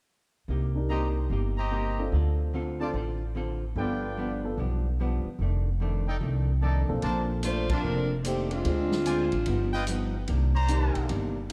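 A dark, lightly reverberant production frames this brassy, swinging big band excerpt, cut from a longer piece in Bb major at 147 BPM with a 4/4 swing. A woody pizzicato upright bass sits up front from 0.5 seconds alongside a clean, hollow-bodied archtop guitar, and an open concert grand piano with deep lows soon joins them, comping through chords such as Cm7, G7 and F13. A bright trumpet section with light vibrato and a soft attack punctuates the texture with ensemble stabs. At 7.0 seconds the music moves into a new section as a vintage drum kit arrives, with dark cymbals, a medium-tuned snare and a punchy kick in a natural studio room. A mellow, tight saxophone section carries the melody up front from 7.5 to 10.1 seconds, marked by a band accent at 7.6 seconds as the harmony passes through Bbmaj9, Dm7b5 and G7b13 before settling on Cm9.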